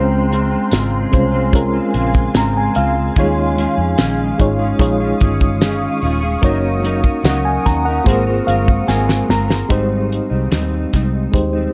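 Indie and bedroom pop at a relaxed 74 BPM in Ab major, this sunny, hazy excerpt drifts through lush seventh and suspended chords as a worn, reedy electric piano with fast tremolo and cassette-tape grit adds short fills around 1.9 and 8.1 seconds, over a dark, clean guitar with analog chorus and a warbly pitch drift. A cloudy, evolving granular pad blurs the chords until 9.7 seconds, while a round, foam-muted fingered bass sits under a dry, up-front 70s drum kit with a fat snare, tight kick and rolled-off top that plays a fill into the closing section. A jingly tambourine stays close but in the background, and a moderate studio reverb softens the whole blend.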